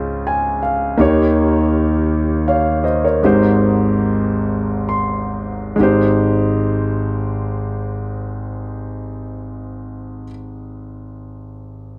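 Gospel solo piano in a slow 6/8, with a soulful and reverent mood that feels lifted from a longer performance. A concert grand carries the whole piece, reaching from deep, resonant bass notes up into the upper register, its tone smooth and vintage, with the soft clatter of the action audible close to the ear. It opens on a fill over a Dbmaj7 chord, moves through Eb7 and settles onto Abmaj7. The time slows from 1.0 s until a second passage begins at 5.8 s, and another fill arrives just before that point. The sound is dry, intimate and up front, like a 1970s studio session, with a touch of studio reverb.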